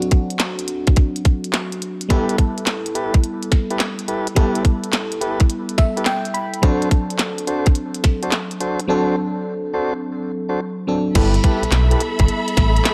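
Bouncy and upbeat, this new jack swing R&B cut moves at 106 BPM in G major with a swung sixteenth-note feel, opening on a glassy, bell-like FM electric piano with chorus over a glitchy, up-front electronic drum kit of tight kick, tiny snare, clicky hats, handclaps and crash. A lightly overdriven tonewheel organ with key click, a stopped rotary speaker and digital delay adds stabs from 2.1 s, the electric piano plays a fill, and a break arrives at 8.9 s. At 11.2 s a new section brings a smooth, dark gliding synth bass with portamento and vibrato and an expressive bowed string section holding sustained chords, set in a digital ambience.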